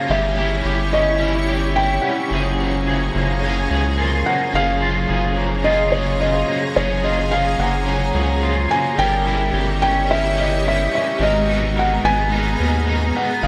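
A straight 4/4 pulse at 108 BPM carries this ethereal, blissful dream pop passage in F# major, cut from a longer piece. A felt-muted upright piano sings the melody in a soft, intimate voice with audible action noise, its notes trailing through plate reverb and digital delay, while a round analog bass sits up front with a deep, dark, sustained tone. Two electric guitars fill the middle: a slightly broken-up, twangy one picks arpeggios through ensemble chorus and delay, and a bright, compressed overdriven one adds accompaniment with tremolo and subtle chorus. Alongside them a shimmering pad holds sustained chords with a granular, detuned glow and an octave-up shimmer. A metallic, ringing vibraphone with medium motor vibrato drifts in the background, returning at 4.0 s and dropping out at 11.4 s. The harmony moves through lush colours such as F#maj9 and G#m9 in a moderate booth ambience.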